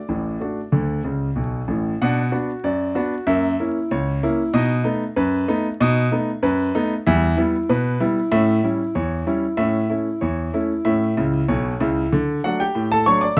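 A solo concert grand piano opens this playful, lively ragtime fragment in D major, sitting up front in an intimate small room with vinyl crackle beneath, its deep bass and audible action noise giving it a vintage character. At a straight 95 BPM in 2/4, the piano plays short fills at 1.1 and 11.2 seconds and moves through B minor, F#7, B7, Em and A7 before settling back on D at 12.1 seconds, where the recording cuts off mid-piece.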